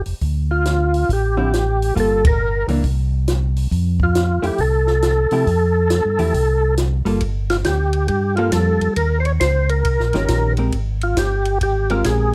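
Close, detailed and lightly reverberant, this swinging, bluesy soul jazz organ trio excerpt at 137 BPM sets a round, dark tonewheel organ bass with slow rotary and light overdrive under a full, percussive second-harmonic organ melody, while a compact cocktail kit with a punchy kick, high-tuned snare and dark cymbals drives from the start, a clean, compressed hollow-body electric guitar joins at 1.4 seconds, the band hits an accent at 2.2 seconds, and the harmony moves from Dm and Gm9 through Fmaj9 to Eb7 and Abmaj9.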